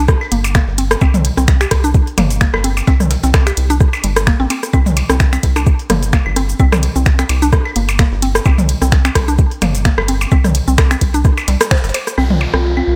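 Swung 16ths at 129 BPM in 4/4, anchored by a soft, up-front electronic kick, carry this cool, hypnotic minimal techno excerpt, where a rubbery, hollow square bass with tube saturation pumps beneath a woody, nasal mallet-like synth pluck riff dressed in chorus and dub echo; two click kits fill out the groove, one tape-warm and low-pass filtered with clicky hats, cabasa, finger snaps and ride, the other overdriven with claves, blips, rim clicks and toms through digital delay, alongside a very quiet, gritty, pitched-up breakbeat sampler kit, until a downlifter and an airy, breathy pad arrive at 12.2 seconds as the harmony falls away.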